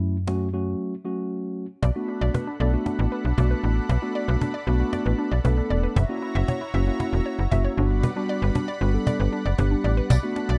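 A straight 4/4 pulse at 116 BPM drives this confident dance-pop excerpt in B minor, with woody, close cajon struck by hard hands sitting up front alongside a snappy, metallic FM slap-style bass and a mellow tine electric piano, before a brief break from 0.8 seconds. At 1.8 seconds a build-up begins as a lush, detuned unison pad with chorus and a hollow, bouncy square-wave pluck playing arpeggios through chorus and tape echo join in, moving from Bm7 through F#7 to Gmaj7 while the cajon carries a drum fill. A jingly tambourine sounds briefly at 10.1 seconds, all within a small room and the rough feel of a home demo mix.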